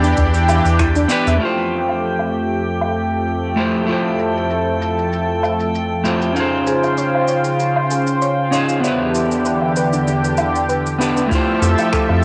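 This sunny, blissful sunset chillout excerpt opens with a lush, warbling unison pad, clean picked electric guitar, a deep round analog bass, an analog kick and a small-room jazz brush kit of finger snaps, hi-hat, shaker and woodblock, while a soft round pluck arpeggiates and a glassy texture of drifting overtones floats in the background. At 97 BPM in F lydian with a light 16th-note swing, the band hits an accent near 0.8 seconds. By 1.4 seconds the kick, bass and pluck have dropped out as filter sweeps move over the pad and drums through Fmaj9, Dbmaj7 and Em7, with the pluck returning at 6.4 seconds, all colored by cassette tape in a tight booth ambience.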